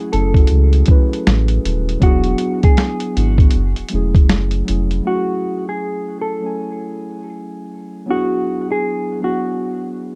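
A hazy, melancholic lo-fi hip hop excerpt in F# minor at 79 BPM with a swung 16th feel opens with a dark, clean hollow-body jazz guitar melody with plate reverb and tape echo over muted, warbling felt-like synth keys with chorus and cassette tape wear, while a deep, round dub sub bass and a muffled, thumpy sampler-style drum kit with hi-hat, kick and snare sit up front until 5.0 seconds, leaving guitar and keys to carry the F#m7 and E9 changes to the close at 10.2 seconds.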